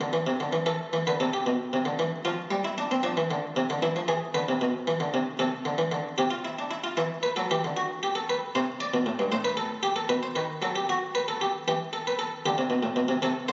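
Captured on a phone in the room, the sound is dulled at the top, its highs stopping at 7.8 kHz, and a concert hall reverb with a 2.1-second tail surrounds it. This fragment of a longer baroque-style two-part invention in A minor, tuned to A4 = 439 Hz, moves at 76 BPM in the dotted quarters of a straight 12/8, with a solemn yet driving mood. A lone harpsichord with its buff stop engaged plays throughout, spanning G2 to D5, its plucked, Italian-style tone muted and lute-like, dry and placed up front. After a brief opening, the main section begins at 0.7 seconds and runs to 13.5 seconds. The harmony travels from Am through Dm/F, E5 and Am/C to Em, then returns to Am and presses on through B5 to settle on Em.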